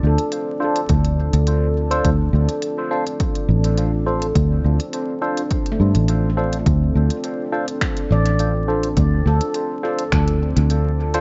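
A round, foam-muted fingered electric bass sits up front in this hazy, meditative ambient dub piece, cut from a longer work and resting on a Dm7 chord in D minor at 104 BPM in 4/4 with a light swing on the 16ths. Around it, a deep, detuned ambient pad holds slow-attack sustained chords with chorus and its own reverb, while a ringing, nitrided-steel handpan plays arpeggios through a low-pass filter sweep and dub echo. An organic electronic drum kit of finger snaps and crisp hi-hats enters at 0.2 seconds, set in small room ambience with dub echo. A barky tine electric piano, lightly overdriven through a combo amp with phaser and echo, adds stabs from 0.6 seconds, and a punchy, layered electronic kick joins at 0.9 seconds before dropping out shortly ahead of the close. The echo-heavy mix carries light reverb and vinyl crackle, with a rolled-off top end.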